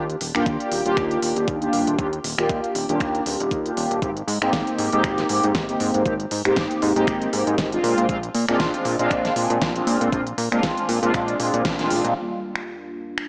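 A swung 4/4 groove at 118 BPM, with 55% swing on the 16ths, drives this feel-good nu-disco clip in Eb major, cut from a longer piece. A mellow synth brass carries the accompaniment, up front, brassy and round, with detuned sawtooth tone, vibrato, chorus, phaser, tape echo and sidechain pumping. Beneath it, a fat analog bass adds a thick, saturated, plucky low end from the opening. A layered pop drum kit supplies finger snaps, crisp hats and a fat snare, and an electronic kick drum enters at 0.5 s with a thumpy, sampler-style punch. The harmony moves through Ebmaj9, Abmaj9 and Bb9, and a band accent at 11.7 s leads into a short closing section at 12.2 s, where a filter sweep arrives as the chords return to Ebmaj9. A lush hall reverb and a small-speaker character frame the whole groove.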